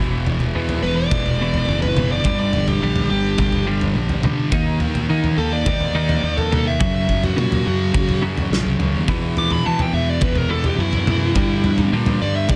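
A steady, straight 4/4 pulse at 105 BPM drives this dark, angsty stretch of quiet-loud alternative rock in E minor, cut from a longer piece and built around a lead guitar solo. A loose indie drum kit enters at 0.3 seconds with a punchy kick, medium-tuned snare and toms, sounding in a pumping studio room with a rolled-off top. Beneath it a growly, overdriven fuzz bass played with the fingers anchors the low end, while three guitars sit in the background: a bright, twangy twelve-string electric playing clean arpeggios with tremolo and slapback echo, a bright distorted electric guitar on a riff, and a thick, dark fuzz guitar adding a riff of its own. At 0.8 seconds the dark, smooth lead guitar arrives up front, its overdriven, picked melody carrying slapback echo as it ranges across a high register above the band. The harmony shifts among E5, Gm, D#5 and F#, lending the solo an uneasy, brooding pull, and light reverb places the whole performance in a modest space.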